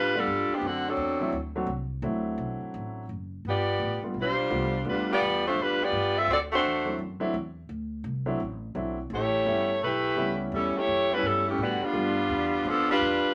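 In a moderate studio room, this energetic, brassy big band swing at 170 BPM features an up-front saxophone section with a smooth top, light vibrato and a soft attack, carrying the melody in phrases that begin at 0.0, 3.5 and 9.1 seconds over a woody, thumpy pizzicato upright bass and an intimate concert grand piano whose audible action noise and long sustain color the accompaniment.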